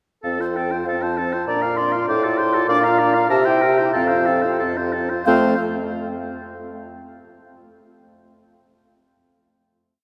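A quick, graceful and spirited classical-period movement for wind quintet in F major, moving at 89-100 BPM in 2/4 with a rubato feel and tuned to A4 = 438 Hz. A hollow, pure concert flute carries the tongued melody with vibrato, over a clear oboe and a punchy French horn playing rocking two-note figures, a smooth-topped clarinet adding a counter-melody, and a mellow, up-front bassoon setting the bass on the beats. All five parts enter together at 0.2 s and pass through F, Bb and C7 before settling on a final F chord at 5.3 s, heard in a church or concert hall with wet cathedral reverb.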